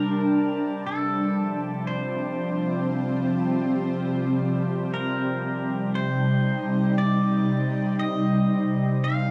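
An up-front, mellow pad of detuned, chorused sawtooth and triangle tones opens this serene, reflective ambient fragment at 59 BPM in C dorian, together with a low, organ-like sine drone tinged with ring modulation, while a quieter clean electric pedal steel guitar, played with fingerpicks and slide in volume swells, sings a melody through plate reverb and tape echo over Gm, F and then Cm7 at 4.9 seconds, all captured as a home cassette recording in a short, wet booth.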